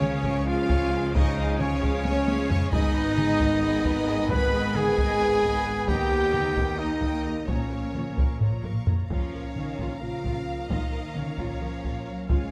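Hard-stick taiko drums drive this dramatic, heroic orchestral film-score fragment in an uneven 7/8, with fills near 2.1 and 8.4 seconds, while a mellow French horn section holds sustained chords and a solo trumpet adds warm stabs until 8.4 seconds. A clear, focused violin section carries the lush bowed melody over a second violin line and violas in the background. Trombones, cellos and rich double basses anchor the low end beneath light reverb and close, detailed microphones.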